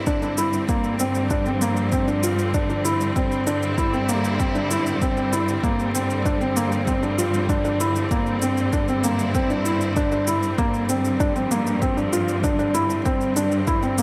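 A light reverb gives this 14-second excerpt of piano and strings electronica a close, studio-made sound, with a felt-muted upright piano sitting up front. The mood is hypnotic and melancholic, set at 97 BPM in 4/4 with a straight feel in G dorian, as the harmony alternates between C/G, Gm7 and Cadd9/G. The soft, mellow piano plays a riff through a delay, its intimate tone carrying audible action noise. Beneath it, a rich, focused cello section holds the bass on G2 with sidechain pumping, while a bright, intense string section sustains bowed chords with lush vibrato. An electronic kick drum with a deep, overdriven punch and a quieter layered shaker, both treated with overdrive and studio reverb, drive the track from 0.1 seconds.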